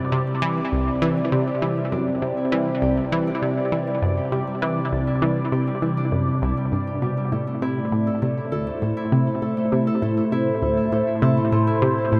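A steady, straight 4/4 pulse drives this ambient, sequencer-driven space music, cut from a longer piece and carrying an expansive, hypnotic mood. A tight sequenced synth enters at 0.1 seconds with a driving low riff, its vintage sawtooth tone bright and warbling, shaped by a quick filter pluck and thickened with chorus, phaser and tape echo, sitting up front in the mix. Alongside it, a phased analog pad, also up front, holds sustained chords with a slow attack and long release, its detuned voice swirling and evolving under phaser and chorus. A Celtic harp plays fingerpicked arpeggios that ring brightly through tape echo, fading in gradually across the whole passage. The harmony rests on Cadd9 before shifting to Am at 7.3 seconds, and a huge, wet reverb with a long tail bathes the sound in vast space.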